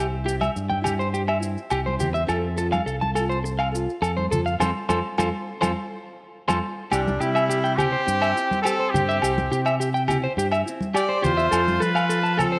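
Joyful highlife guitar band music in a straight 4/4, where a slightly broken-up electric guitar with slapback echo picks arpeggios up front over a warm fingered electric bass, a fingerpicked nylon-string guitar tucked in the background, ringing agogo bells, grainy maracas and close, dry congas; the band hits an accent from 4.6 to 6.9 seconds, and at 6.9 seconds a clear, distant trumpet takes the melody alongside a bright, close-miked tenor saxophone second line, the whole cut framed by a moderate plate reverb.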